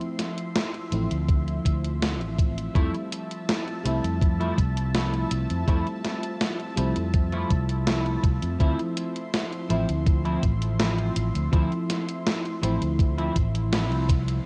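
A woozy, dreamy vaporwave fragment opens on an FM electric piano with a soft pad layer, its fast-attack, decaying tones coated in lush chorus and analog delay, beside a thick, detuned unison pad whose slow-attack chords carry phaser shimmer and a gritty 12-bit sampler edge. A gated 80s digital drum machine supplies hi-hat and a snare blooming with gated reverb, sounding up front as if re-recorded in a large room. A dark, round fretless electric bass enters at 0.9 seconds, and a thumpy, sampler-style electronic kick drum follows at 1.3 seconds, the loudest element in the mix. From 2.7 seconds a clean, scooped electric guitar plays a fingered riff through ensemble chorus and analog delay as the harmony drifts from Dm9 to Fmaj7 and back to Dm9. The whole band lands a brief accent near the close, and the muffled cassette-tape sound, with only light reverb, keeps the haze soft and hazy-topped throughout this slice of a longer piece.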